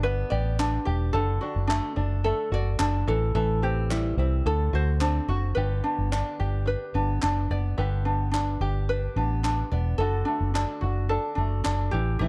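A bright, fingerpicked ukulele sits up front from the first moment, alongside a plunky, twangy open-back banjo playing arpeggios through tape echo and a round, punchy, foam-muted electric bass. This sunny, carefree acoustic pop excerpt moves at 108 BPM in a straight 4/4 feel in G major, tuned slightly sharp to A4 = 441 Hz. Hollow group handclaps recorded in a live room enter at 0.6 seconds and carry on until 11.8 seconds. The opening passage moves through G, D/F#, Am7 and D7, and at 5.6 seconds a second section returns to G before shifting to D/F#. The amped, dark-toned bass sits up front beneath the light ukulele, while the percussive banjo stays further back, all inside a warm studio reverb.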